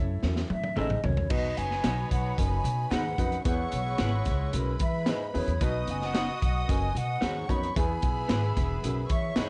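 Warm and danceable, this cut from an uptempo 1960s-style soul piece opens with woody pizzicato upright bass and short-sustained baby grand piano, quickly joined by a crunchy breakbeat drum fill, while a growling, raspy baritone saxophone riff sits in the background, a breathy jazz flute carries the melody with slapback echo, and lo-fi electric guitar stabs shimmer through lush chorus; from 1.3 seconds a dark, bowed string section and a distant, roomy horn section add second lines, set in small-room ambience with light reverb.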